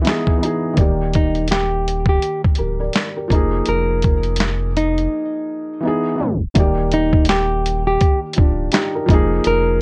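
A swung 4/4 groove at 83 BPM, laid down by a gritty, compressed sampler-style kit with thumpy kick, medium-tuned snare, hi-hat and handclaps, drives this nostalgic, mellow lo-fi hip hop excerpt in Eb major. A fingerpicked, classical nylon-string guitar carries the melody through a low-pass filter and plate reverb over a soft, intimate felt-muted upright piano with audible action noise and cassette tape coloring, while a deep, round sine sub bass enters at 0.8 seconds. The chords move among Emaj7, Ebmaj7 and Bb7sus4/F, and a break from 5.1 seconds ends in a tape stop before a new section begins at 6.6 seconds, with light reverb and cassette character across the mix.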